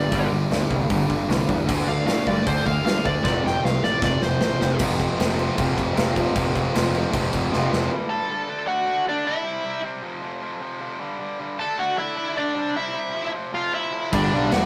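This energetic, upbeat punk rock excerpt at 154 BPM opens with a smooth, overdriven lead guitar solo up front, backed by a big drum kit with a punchy kick and bright cymbals, a growly fuzz bass, and three picked rhythm guitars riffing in the background: a double-tracked overdriven one, a raw garage one and a tight distorted one. The lead drops out at 4.8 seconds, and after a drum fill the band falls away at 7.9 seconds. The lead melody then returns over the tight guitar until the full band comes back at 14.1 seconds. The sound is rough and rehearsal-room raw, with tube saturation and light reverb.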